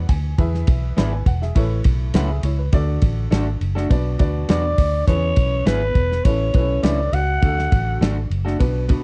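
A straight 4/4 groove at 102 BPM drives this joyful, 1960s-style soul passage in A major, with a tight kick, medium-tuned snare, hi-hat and dark-cymbaled ride pushed up front alongside a round, punchy, foam-muted fingered electric bass. After a brief fill from a woody, slightly detuned upright piano bathed in plate reverb, a slightly broken-up electric guitar through a small old amp adds picked stabs from 1.0 seconds over a cycle of E, Aadd9, D and B minor. At 4.5 seconds a raspy, breathy, growling alto saxophone takes the melody, while a metallic, ringing vibraphone with slow motor vibrato traces a second line in the background of this warm, lightly reverberant mix.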